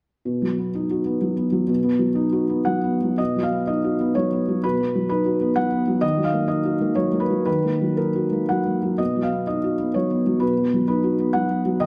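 A rubato waltz-time pulse breathes freely through this reflective, melancholic fragment of neoclassical minimalist piano, cut from a longer piece. A solo felt-muted upright, tuned slightly low at A4 = 437 Hz, sits up front with a soft, intimate tone, its thick felt and audible action noise close at hand. The harmony shifts at 6.0 seconds and returns to its opening chord at 9.0 seconds, and moderate recital-hall reverb gives the piano a gentle sense of space.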